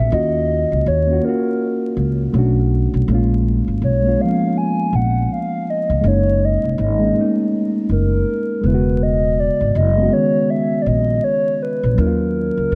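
From the first moment, a soft, hollow, clarinet-like synth lead with vibrato and chorus carries the melody over a reedy electric piano run through a cassette tape effect and a woody pizzicato upright bass up front, in a dreamy, mellow lo-fi hip hop excerpt at 81 BPM with swung 16ths, moving through chords such as D#m9, Bm7 and F#6 amid vinyl crackle, light reverb and a dark, warm production.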